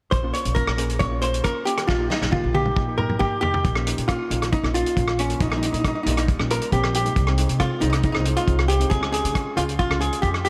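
Up front, a dark, clean hollow-body jazz guitar carries the melody with slapback echo in this bouncy, carefree calypso excerpt, supported by a woody, growly pizzicato upright bass, a dry, tight-kicked soul drum kit that plays a fill from 1.9 to 3.6 s, and a quieter, shimmering steel pan played with hard rubber sticks, all set in a lush hall reverb with a big arena sound.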